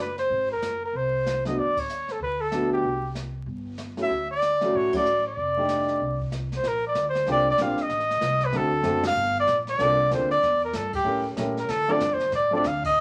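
Vinyl crackle and a wet club reverb frame this short cut from a longer small-group jazz piece, a warm, swinging slice of swing and bop. A clear, close-miked trumpet sits up front carrying the melody with vibrato, while a woody, growly upright bass, plucked on steel strings, holds down the low end from the very start. A brush kit with dark cymbals, a medium-tuned snare and a boomy kick enters at 0.2 seconds and stays low in the mix. A grand piano with long sustain joins at 1.5 seconds to accompany beneath the horn. The band lands accents together at several points, including 4.9 seconds, as the harmony moves through rich chords such as Gmaj9, F13 and A7b9, and partway through, the tune passes into a new section before the fragment ends.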